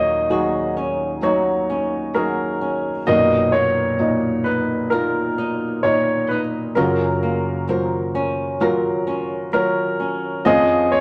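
In an unhurried, straight 4/4 at 65 BPM, this emotional, hopeful pop ballad moves through Ebm7, Cbmaj7, Gbmaj7 and Dbmaj7/F, with a clear grand piano carrying the melody and a felt-muted upright piano supplying soft, mellow accompaniment, both up front with audible action noise. Beneath them a fingerpicked flamenco guitar plays arpeggios at a lower level, its acoustic tone warm. A moderate studio reverb gives the 11-second fragment, cut from a longer piece, an intimate, natural sense of space.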